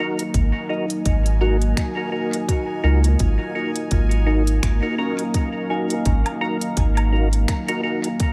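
Swung sixteenths at 84 BPM in 4/4 carry this deep, meditative ambient dub fragment, where a tight, tape-warm electronic kick and an organic electronic kit of finger snaps, smooth hi-hat and woodblock with dub echo sit beneath a round, up-front sub bass with tube saturation, a dark detuned pad holding sustained chords over D#m/G#, mellow percussive tonewheel organ stabs through a slow rotary speaker and dub echo, soft FM bell arpeggios with tape echo in the background, and a bright, bubbling stepped-filter texture, all in light digital ambience.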